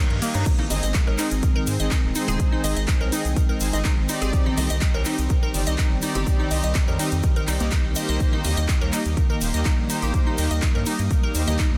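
A punchy, up-front electronic kick lands at 0.5 seconds to drive this hopeful, euphoric progressive house excerpt at 124 BPM in Eb major, locking in with a round, deep analog bass and a house kit with metallic hats that enter at 0.1 seconds, while a reverse cymbal sweeps in the background from 0.1 to 0.5 seconds. Glassy, crystalline wavetable arpeggios with digital delay sparkle over a lush, airy pad and smooth supersaw stabs, all breathing with sidechain pumping as the chords move from Ab to Cm at 4.3 seconds and Eb at 8.2 seconds. A grainy tube shaker and distant, ringing cowbell, congas and bongos add very quiet texture beneath a dense, heavily limited modern master.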